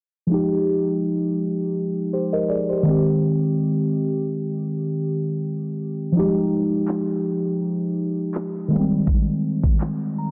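Muted, felt-like synth keys with a dark, intimate chorus-tinged tone carry this late-night, sensual contemporary R&B excerpt at 82 BPM in F minor, moving between Fm9 and Abmaj7 under a filter sweep and light reverb, before a trap drum kit with a knocking kick and handclaps enters up front at 6.9 s and the keys add a brief fill at 9.8 s, all within a dense, heavily limited modern master.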